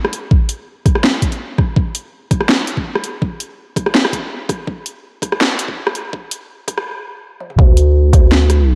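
Spacious and heavy, this half-time drum and bass excerpt, cut from a longer piece, carries a light swing and a dark production with light reverb and a high-pass filter. An overdriven drum kit of cracking snare, bright hats, rim click and toms plays up front from the start, and a knocking electronic kick, also overdriven and layered, joins at 0.3 seconds. The opening build-up rides a filter sweep until a drum fill at 7.4 seconds sets up the drop. At 7.6 seconds a growling, buzzy 808-style bass with a fast attack and decaying sine tone arrives up front in the low register. The drop runs only briefly before the cut.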